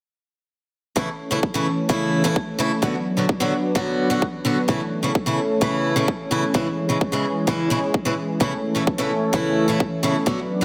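Triumphant and anthemic, this brief festival progressive house cut at 129 BPM in A major sets a bright, boxy picked acoustic guitar with swing feel and finger squeak up front, pumping against a lush, detuned supersaw pad that carries a filter sweep through its sustained chords, all driven by a punchy, overdriven electronic kick in a moderate scoring-stage reverb.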